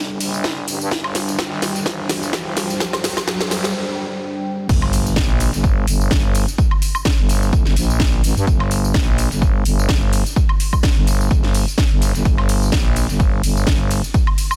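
Gritty and aggressive, this bass house cut in G minor drives at 127 BPM in 4/4 with a slight swing on the sixteenths. A dark analog pad holds sustained, detuned sawtooth chords with a sub octave and chorus, pumping against the kick, while a growling FM bass sits up front, thick and tube-saturated, from the opening to 14.0 seconds. The build-up carries a drum fill and an electronic riser in the background, pausing for a brief break at 3.7 seconds before the drop lands at 4.7 seconds with an impact. An overdriven house kit supplies a cracking snare, metallic hats, crash, ride, tambourine and woodblock, layered over a punchy, overdriven electronic kick, both re-recorded in a large room. Behind them, a dusty sampler-style kit adds compressed hi-hat and a medium-tuned snare from a small room, under light reverb and a dense, heavily limited master.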